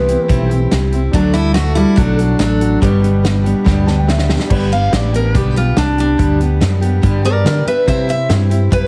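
A bright, up-front picked steel-string acoustic guitar carries the melody in this sunny, easygoing honky-tonk and classic country excerpt, its finger squeaks audible, and it takes a solo from 4.5 seconds to the end. Underneath, a second picked steel-string acoustic with fresh strings and a dreadnought body picks out the accompaniment over a straight 4/4 at 142 BPM in G major. A growly, round fretless electric bass with a hollow-body, amped character sits up front, while a natural small-room drum kit with a punchy kick, medium-tuned snare, hi-hat and crash keeps time. A very quiet concert grand piano with deep bass adds soft accompaniment, and it joins the drums in a fill from 3.7 seconds just before the solo. The harmony moves through C, D and G before returning to C, all under light reverb and a heavily compressed, radio-style sound.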